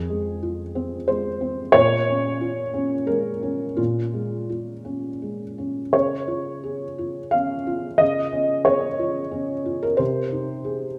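A felt-muted upright piano plays alone throughout this short, intimate and wistful neoclassical minimalist piece cut from a longer work, its dark, thickly dampened tone with short sustain sitting up front across a range from F2 to F5 as it moves rubato in 3/4 at around 82-92 BPM through Fm, Bbm7, Db and Ab/C, tuned to A4 = 438 Hz and framed by a moderate recital hall reverb.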